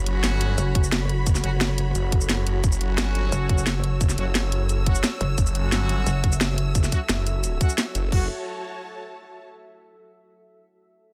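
A straight 4/4 pulse at 175 BPM drives this futuristic, mechanical slice of dark technical drum and bass in F# minor, where an overdriven electronic kick and a cracking, bright-hatted kit with crash, shaker and snare sit up front beneath a swirling phased saw bass and an aggressive metallic wobble bass (0.6-6.9 s), while clear delayed brass stabs, a lush bowed string section and a deep, moody pad pumping with the sidechain fill out the F#m drop before the strings linger alone until 9.5 s.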